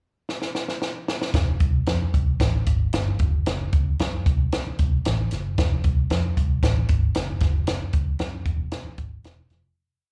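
A dark, round, foam-muted electric bass carries this short, warm and danceable 1960s-style soul piece, entering at 1.3 seconds with a melodic, syncopated line full of muted ghost notes and chromatic approach notes. Before it, a compact cocktail drum kit opens with a fill at 0.3 seconds, then drives a soul beat with a high-tuned snare on all four beats, a punchy kick and hi-hat, both parts sitting up front. It sounds like a live gig heard through the venue's PA with club reverb, and the whole piece fades out from 7.7 seconds.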